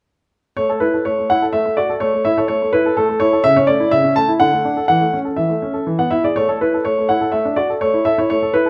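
Recorded close and in detail within a moderate recital-hall reverb, this elegant, graceful classical-period piano sonatina fragment in A major, in 3/4 at 125 BPM with a rubato feel, features a solo concert grand piano that sounds clear, natural and up front, with deep bass and long sustain, playing from 0.6 to 8.7 seconds over a harmonic movement among A, D and E chords.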